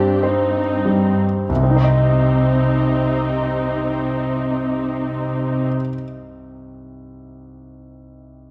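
Cinematic, emotional film score in C minor at a rubato 48 BPM, this bittersweet, longing excerpt sets a clear, up-front grand piano over veiled, con sordino violas with lush vibrato and dark, soft-attacked muted cellos on the bass line, all sitting in a wet scoring-stage reverb as the opening slows over Cm/G before settling on Cm at 1.5 seconds, the strings stopping at 5.7 seconds and the piano carrying on alone until 8.5 seconds.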